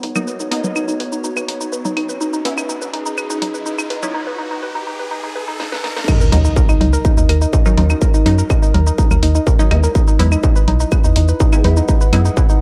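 A dark, lightly reverberant production opens this dramatic, melancholic melodic techno excerpt at 124 BPM in Eb phrygian, where a woody, wave-folded pluck plays chorused arpeggios with dub echo and a filter sweep through a build-up. Beneath it sit a tight, punchy sequencer bass, a muted, detuned dub chord stab with phaser and lush chorus, a warbling, lo-fi tape-like pad in the background, and a riser. A techno kit of claves, congas, shaker, cracking snare, hi-hat and crash, all re-recorded in a large room, plays throughout, with a drum fill at 5.6 seconds before the drop lands at 6.1 seconds with an impact and a distorted, up-front electronic kick, as sidechain pumping makes the pluck, bass, pad, stabs and kit breathe around it.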